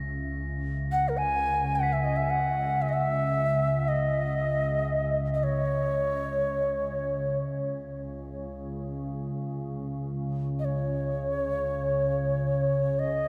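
A glassy FM pad opens this haunting, spacious piece of free-time world meditation music in C# dorian, its slow-attack drone sustained low and ethereal and treated with ensemble chorus. Soft, shimmering crotales ring in the background from the start, adding a high, bell-like glow until they fall away at 9.2 seconds. At 0.9 seconds a mellow, airy cedar flute in the Native American style steps up front to carry the melody, its woody tone marked by vibrato, tongued notes with an audible chiff and an unsteady delivery, trailed by analog delay. The whole mix is soaked in a dreamy cathedral reverb with a long 6.7-second tail, so the flute and pad hang in a vast, echoing space. Cut from a longer work, this passage unfolds as a single unbroken section.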